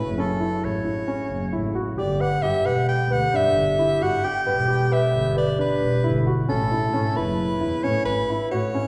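Pensive, restless contemporary chamber music in 5/4 at 133 BPM, in which an up-front soprano saxophone carries the jazz-style melody with subtone, vibrato and scooped notes over a concert grand piano's short-sustained arpeggios, a tight, vintage-toned woodwind section holding classical-style chords in the background, and a dark, veiled, bowed double bass played con sordino until 8.7 s, all set back in a wet recital hall whose reverb rings for 1.7 seconds, in this 8.9-second cut from a longer piece.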